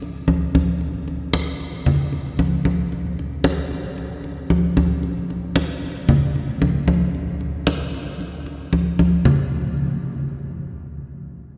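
This Latin percussion piece, cut from a longer work, has a sunny, danceable mood at 114 BPM in a straight 4/4. Congas carry the whole performance from 0.0 to 9.4 seconds. They have a warm, thick-skinned, medium-tuned acoustic tone, struck with hard hands and placed close and up front. The recording itself sits in a church or concert hall, steeped in a wet, cathedral-like reverb whose long tail lingers for about 5.4 seconds. The music shifts into new sections at 5.0 and 9.2 seconds, and the final section runs on to 11.6 seconds.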